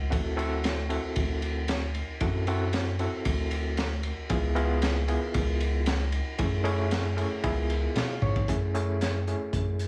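A straight-eighth soul blues groove at 115 BPM in 4/4, with a light swing on the sixteenths, carries this short, smoky excerpt in F# minor, moving from D7 through C#7#9 to F#m7. A round, nasal analog bass anchors the low end while a reedy, overdriven electric piano sits up front through a combo amp with medium tremolo and plate reverb, adding a fill from 7.7 seconds. The crunchy breakbeat kit has a punchy kick, a high-tuned snare and dark, rolled-off cymbals, and it drops a fill at 8.2 seconds before the music turns to a new section at 8.5 seconds in a dry studio room.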